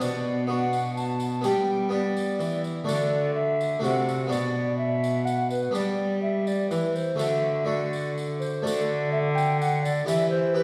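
A hollow, airy tenor recorder carries the melody with breathy chiff and vibrato in this stately, festive Renaissance-style consort dance in triple time, cut from a longer piece. Up front, a brilliant Flemish-style harpsichord plucks the accompaniment through a cycle of Bm, G and D, while a single bowed cello with gut-string tone and light vibrato anchors the bass, turning to Em near 10.1 seconds. A jingly tambourine adds soft, close and dry accents, with the whole consort heard from further back in a reverberant recital hall.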